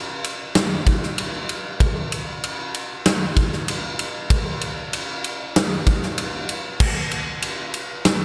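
Rock drum excerpt at 96 BPM in a straight 4/4, carrying a dreamy, hazy mood. A big acoustic rock kit enters at 0.2 seconds and plays through to 8.2 seconds, its punchy kick and medium-tuned snare sitting up front alongside bright crash and ride cymbals. The kit has a natural big-room sound, touched with light reverb.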